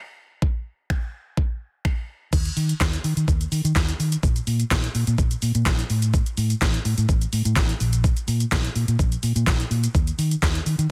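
A layered electronic pop drum kit opens this confident, energetic dance-pop cut at 0.4 s, with a knocking kick, deep snare, hi-hat, shaker, finger snaps, handclaps and crash cymbal overdriven and up front, before a dark, round, foam-muted vintage fingered electric bass joins at 2.3 s with sidechain pumping, the straight 126 BPM groove sitting dry in a dense, heavily limited modern master.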